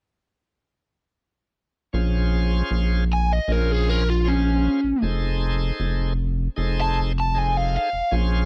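At 1.9 s a bright, shouting tonewheel organ with a slow rotary speaker and overdrive enters alongside a rubbery, hollow square-wave bass that sits dark and up front, and at 3.1 s a picked, compressed electric guitar takes the melody over Bbm7 moving to F7#9, giving this mournful, brooding straight-eighth soul blues in Bb minor at 78 BPM a dry, close 1970s-style studio sound in a short cut from a longer piece.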